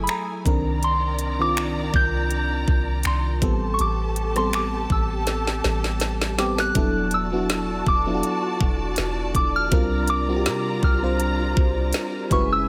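A trap drum kit with a knocking kick, woody snare, crisp hats and finger snaps sits up front in this sensual, longing contemporary R&B excerpt at 81 BPM, where a soft, pure synth bell carries the melody through chorus and phaser over a dreamy FM electric piano with a pad layer, a bowed string section pumping under sidechain, and a deep, round 808-style bass, with a drum fill from 5.3 to 6.8 seconds leading into the second section as the chords move from Cm9 and Am9 to E9sus4 and C9sus4.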